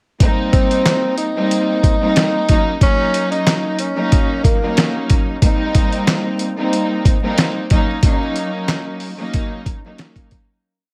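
Boom-bap hip-hop with a dark, reflective mood, built as a single hook over a swung groove that alternates between two minor seventh chords. A gritty, sampler-style drum kit sits up front, its compressed, tape-warm sound giving a thumpy kick, a medium-tuned snare layered with handclaps on the backbeat, and hi-hat. A studio string section supplies chopped, bowed chords repeated like a sampled loop, played sul tasto with light vibrato and a soft attack for an intimate, close feel, filtered at both ends of its range. From 0.5 to 4.9 seconds a breathy tenor saxophone plays a short looping jazz melody in a mellow subtone, with scooped notes and vibrato, its filtered tone trailed by tape echo. Vinyl crackle and light reverb add a dusty patina before the track fades out from 8.0 seconds.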